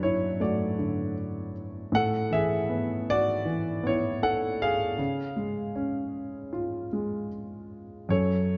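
Acoustic folk-pop ballad in an intimate, reflective mood, carried by a solo grand piano with a warm, smooth, vintage tone and short sustain, placed up front. The piano moves through D/F#, Asus2 and C# in a straight 4/4, set in a moderate scoring-stage reverb that adds space around its close sound. This brief cut from a longer piece ends at 8.6 seconds.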